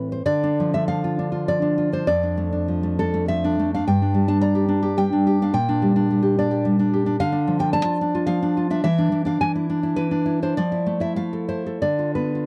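Romantic solo classical guitar in D minor, intimate and melancholic, drifts in a rubato 3/4 between 82 and 111 BPM as a fingerpicked nylon-string guitar with a full-bodied tone, fresh strings and audible finger squeak sits up front in a dry, close 1970s-style studio sound touched with light reverb, moving from Dm through Gm, E7 and Fmaj7 before this short cut ends on Bdim/D at 12.5 seconds.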